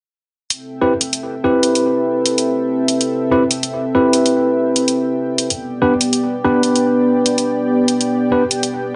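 A tine electric piano sits up front with clean, gritty stabs, roughened by vintage 12-bit sampler grit, darkened by a low-pass filter and trailed by tape echo, in a swaggering glitch hop excerpt at 96 BPM with a 16th-note swing in A minor. A layered electronic hi-hat sits up front alongside it, while a smooth, detuned analog pad with a sub octave and chorus holds mellow sustained chords beneath, moving from Am7 to G at 5.5 seconds. The moderate studio reverb keeps the sound fairly tight, and the top end is rolled off for a dusky finish.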